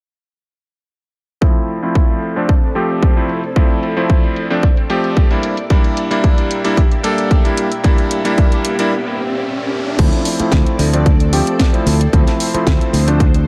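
A bright, cutting electric grand piano with a clangy low end sits up front in this sleek, cosmic nu-disco excerpt at 112 BPM in D minor, its chords pumping against an overdriven, punchy kick and bathed in dub echo and filter sweeps, while a lush, sawtooth string machine with slow attack and ensemble chorus sustains Dm7 and Em7b5 beneath. A house kit with a cracking snare and filtered hats and crash adds roomy texture, and a background riser builds from 7.8 s into a break at 8.9 s. At 10.0 s a growly, bright fingered electric bass enters up front on D2, its tube saturation anchoring the return to Dm7 in an echo-heavy mix with light digital reverb.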